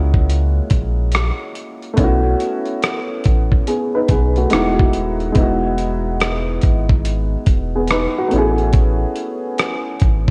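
Nostalgic and mellow, this lo-fi hip hop piece, cut from a longer work, moves at an unhurried pace with a swung sixteenth-note feel. A dark, worn upright piano carries the accompaniment up front, its woody tone slightly detuned and filtered, with audible action noise and long sustain that lend it an intimate character. Beneath it, a deep, full sub bass with an added octave holds sustained notes with a fast attack, while a gritty, compressed sampler-style drum kit with a thumpy kick, hi-hat and rim click sits up front, sounding re-recorded in a small room. The harmony drifts through lush extended chords, from F#9 and B9sus4 to Emaj9 and Amaj9, across two matching passages that split at 5.4 seconds. Light reverb and a cassette tape sheen give the whole recording a dusty, faded glow.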